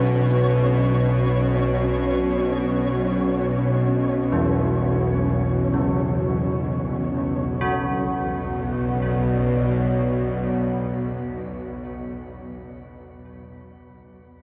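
Dark ambient drone in free time and B minor, cavernous and desolate, where a tense, string-like bowed drone sits up front in the low register beneath a deep, moody pad with chorus and shimmer reverb, while old church bells ring out clangorous, bronze arpeggios through delay and a flickering grainy texture hovers until 7.6 s, when the harmony shifts from Bsus2 to Bm, all steeped in a huge, dark reverb in this fragment of a longer piece.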